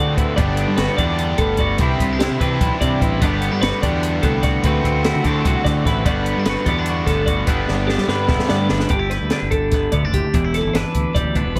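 Two bright, twangy twelve-string electric guitars carry this short excerpt of intricate, wistful math rock and midwest emo: one plays clean, compressed accompaniment with a subtle chorus, and the other picks chiming arpeggios higher up. The piece moves at 295 BPM in a straight 7/8, in G major, with lush chords such as Gmaj9, Cmaj9 and D13 before settling on G69 and Em7. A raw, double-tracked garage guitar with overdrive and spring reverb plays a riff until 8.9 seconds. Under it, a growly fuzz bass with overdrive gives a punchy, gritty low end. A compact cocktail drum kit enters at 0.2 seconds, with a dark, smooth tone, a high-tuned snare, a punchy kick and a rolled-off top, and it plays a fill from 7.7 seconds into the closing section. Light reverb gives the mix a touch of space.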